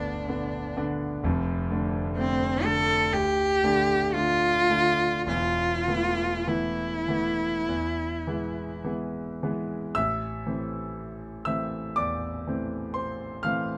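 Closely recorded and nearly dry, with both instruments up front, this excerpt from a romantic classical duo in A minor moves at a slow, rubato 49-65 BPM in 4/4 and carries a yearning, solemn mood. A rich, expressive bowed cello sings the melody with vibrato, portamento and a soft attack, while a clear grand piano with deep bass and a smooth, vintage character supports it through chords from G and Dm to a suspended E. The cello falls silent at 8.9 seconds, and the piano carries on alone, settling onto A minor at 10.0 seconds and closing at 13.8 seconds.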